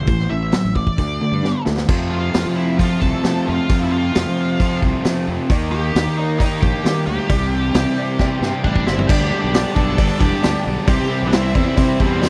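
A driving, confident classic rock piece at 133 BPM opens on an octave-fuzz lead guitar melody coloured by wah, distortion and tape echo, over two picked, overdriven rhythm guitars (one crunchy, one with a hollow-bodied semi-hollow tone) set back in the mix, a growly, punchy fuzz bass, and an up-front vintage drum kit with a tight kick, a rolled-off top and a gritty, saturated character; a very quiet metallic cowbell joins at 5.5 s, a dark second fuzz-guitar line slips in at 8.6 s, and the music settles into G major at 9.1 s, all in a dry, close 1970s-style studio sound with light reverb.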